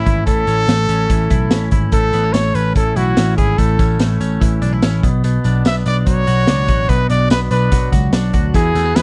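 A dry, close recording in a 1970s studio style carries this breezy, nostalgic slice of jangly indie pop, cut from a longer piece. A brilliant, up-front trumpet sings the melody with light vibrato and scooped notes over a twangy, compressed twelve-string electric guitar playing clean picked arpeggios, while a round, foam-muted picked bass sits underneath. A raw garage drum kit with a punchy kick and a rolled-off top drives the groove from 0.1 seconds alongside a jingly tambourine in the background, as the harmony moves from A to Bm at 5.0 seconds.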